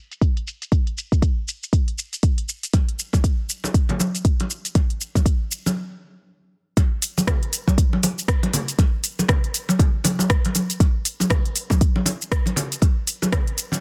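A dry, dense and heavily limited mix carries this hypnotic, spiritual house groove at 119 BPM, its sixteenths swung in 4/4, cut from a longer piece. A deep, up-front electronic kick anchors a produced afro-pop kit of smooth, low-pass-filtered hi-hats, rim clicks and shaker, and bright, vintage-toned acoustic congas with a band-limited edge join prominently at 2.7 seconds. After a stop at 5.8 seconds, the drop lands at 6.8 seconds and carries the groove to the close.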